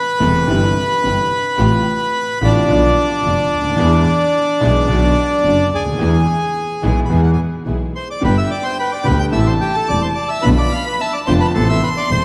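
Sultry and passionate, this rubato tango fragment sets a reedy, close-miked bandoneon melody up front over intimate piano accompaniment with audible action noise, a clear bowed double bass, and very quiet sul tasto string stabs, all in a dark concert-hall ambience, and at 8.2 seconds a bowed violin with portamento joins as a second line.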